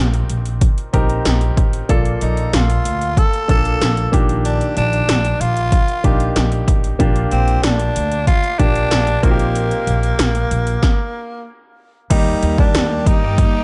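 1980s-style pop with a nostalgic, glossy mood, this short excerpt rides a straight, steady groove over smooth seventh-chord harmony. Punchy electronic pad drums sit up front with a gated snare, metallic hi-hats, crash cymbal and a tape-warm analog character. A woody, growly upright bass, plucked pizzicato on steel strings, joins them up front, while a clear, polished concert grand piano adds present, short-sustained accompaniment with deep low notes. At 2.2 seconds a raspy, gritty tenor saxophone takes the solo melody, close-miked with vibrato, a pop-style growl and a slapback echo. After a stop at 10.8 seconds, a shimmering vintage string machine with a sawtooth tone, soft attack and ensemble chorus enters in the background at 12.1 seconds, resolving onto an Eb chord inside a small, lightly reverberant room.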